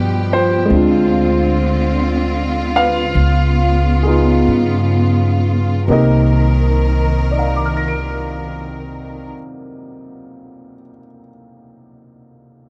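This jazz ballad in C minor unfolds at a slow 42-51 BPM in 4/4, with a gentle swing on the eighth notes and a wistful, smoky mood, and it is cut from a longer piece. The tempo slows through the opening 5.9 seconds as the harmony moves from G7 through Dm7b5 and Db7 before settling on Cm9. An upright bass sits up front with a woody, pizzicato tone from steel strings, holding to the low register. A lush bowed string section sustains smooth, even chords with vibrato above it. Both bass and strings stop at 9.3 seconds, leaving the natural-sounding grand piano, also close and present, to carry on alone until 12.7 seconds. The sound is dry and intimate, with little reverb, like a close 1970s studio recording with a warm character.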